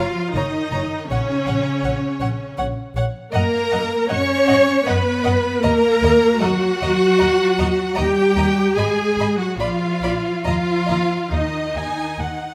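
A slow, tender romantic movement for string orchestra in a flexible, rubato three-four, this excerpt sets a clear, focused first violin melody over a second violin line, with a lush, up-front viola section carrying the accompaniment and smooth, even cellos and double basses bowing the bass with vibrato, all captured by close, detailed microphones in light reverb as the harmony turns from major toward a minor colour at 3.3 seconds.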